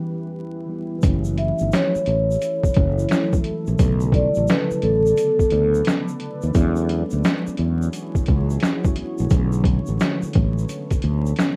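Lo-fi hip hop at 87 BPM in B minor, reflective and melancholic, with a swung 16th feel over a rough home-demo sound dusted with vinyl crackle. A deep, dark pad with chorus and built-in reverb plays from the start alongside a mellow tine electric piano in the background, before a muffled, overdriven sampler-style drum kit with thumpy kick, snaps and gritty 12-bit texture, a grainy tube shaker and a growly, up-front fretless bass come in at 1.0 seconds. A ringing vibraphone played with soft mallets carries a brief melody from 1.4 to 5.8 seconds as the chords move from F#m7 to Bm9, with E13 arriving later.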